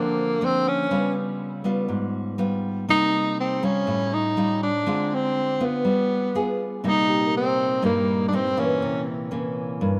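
A breathy tenor saxophone sits up front with a mellow, subtoned solo full of vibrato and scooped notes, carrying a jazz-style melody through an intimate, melancholic bossa nova in C minor at 121 BPM until 9.1 seconds. A full-bodied nylon-string guitar fingerpicks the accompaniment with audible finger squeak and a deep classical tone, while a very quiet, dark grand piano adds touches over a harmony that moves from Gm7 through Db7#11, Aaug7 and G7b9 before settling on Cm7 and C7b9. At 6.8 seconds a principal-stop pipe organ enters in the background with smooth, romantic sustained chords, and light reverb gives this short cut from a longer piece a soft sense of space.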